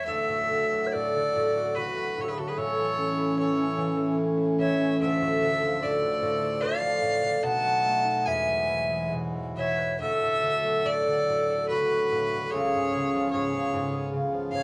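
Nostalgic and pastoral, this excerpt of a Celtic slow air drifts in rubato 3/4 at roughly 68-77 BPM, with an earthy bowed fiddle carrying the melody up front, an airy, crisp-attacked baroque flute tracing a second line, fingerpicked concert harp ringing out the accompaniment, and a reedy, breathing harmonium sustaining chords in the background from 0.1 s, all played live together in one room with moderate reverb as the harmony moves from D through Dm, B7 and Eadd9 to close on C#7.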